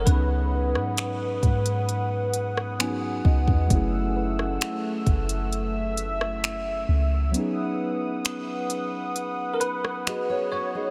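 Moody and longing, this slow contemporary R&B excerpt moves at 66 BPM in a straight 4/4, drifting from C#9sus4 to F#m7 and back inside a dreamy mix soaked in huge ambient reverb. Muted, felt-like synth keys with a warbling vintage tone and a smooth, warm analog pad carry the harmony throughout, while a bell-like, bright tine electric piano states the melody at the start and returns near the end. A deep, round 808-style bass and an up-front, tape-toned drum kit of finger snaps, hi-hat, kick and rim click anchor the groove, with the kick dropping out at 7.3 s, a very quiet, gentle pluck passing through the middle, and a fingerpicked nylon-string guitar adding fresh-stringed arpeggios from 10.1 s.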